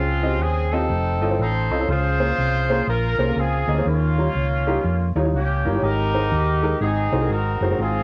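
Swinging eighth notes at 122 BPM in 4/4 drive this uplifting, soulful uptempo gospel clip in Ab major, cut from a longer piece and tuned slightly flat of standard pitch. A horn section carries the melody across all 8.0 seconds, its ensemble tone warm with light vibrato and a distant, roomy quality even as it sits up front, colored by cassette tape. Beneath it, an upright piano supplies woody, slightly detuned accompaniment, also carrying that tape character. A hollow-body short-scale electric bass, played with the fingers, anchors the low end with a dark, round, amped sound placed prominently in the mix. The harmony moves through rich extended chords, from Dbmaj9#11 through Bbm9 and Eb9 before settling toward Ab7, all heard in a homespun cassette recording with moderate spring reverb and studio ambience.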